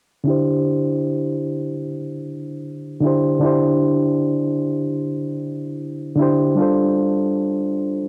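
A slow hip hop groove at 76 BPM in 4/4 leans on a 64% swing in the sixteenths, giving this hazy, melancholic fragment of a longer piece its unhurried lilt in D minor. The only part is an overdriven reed electric piano, playing accompaniment from 0.2 to 8.1 seconds across a range of D3 to C5. Its tone is reedy and barky, pushed through a combo amp into a gritty bite, and it sits up front in the mix, colored by cassette tape and a low-pass filter. A filter sweep runs across the piano from 0.3 seconds to the end, while the harmony rests on D9sus4 before shifting to G9sus4 at 6.6 seconds. A moderate, lush hall reverb with a 2.8-second decay surrounds the sound, captured as a home recording on cassette.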